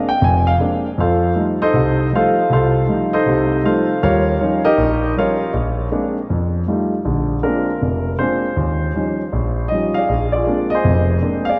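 A warm concert grand piano plays alone in this playful, swinging solo jazz excerpt at 158 BPM in 4/4, its deep bass sitting up front with a touch of tape echo as it moves through Bb9, F9 and Eb9 chords, all soaked in a lush hall reverb that gives the mix a dreamy glow.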